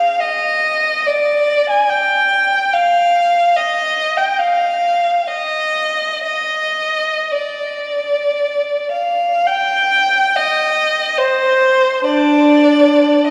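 The rhythm moves freely in a rubato 3/4, with the pulse drifting between 45 and 77 BPM. This short classical excerpt in Eb major is for a single unaccompanied violin, lonely and meditative in mood. The bowed line sits between D4 and Ab5 and sounds warm, smooth and even, colored by vibrato. A first phrase unfolds until 9.5 seconds, and a new passage carries the piece to its cut at 13.3 seconds. The violin is placed up front, yet a wet church reverb with a 3.6-second decay and a listening position further back in the room give it a distant, spacious quality, while vinyl crackle lends an aged patina.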